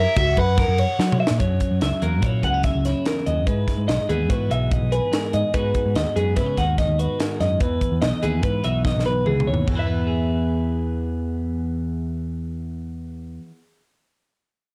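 A twangy, clean twelve-string electric guitar sits up front with compressed, picked arpeggios in this bright, playful math rock and midwest emo excerpt in 5/4, while a crunchy overdriven guitar plays a brief melody that stops at 1.2 s, and a second twelve-string guitar enters on accompaniment at 1.4 s. A punchy, amped picked bass and an airy, polished fusion kit with a high-tuned snare, tight kick and two drum fills carry the straight feel as the chords move through F#7, Emaj7 and G#m7 before landing on E at 9.7 s. Small room reverb and a gritty cassette-tape character color the dry recording.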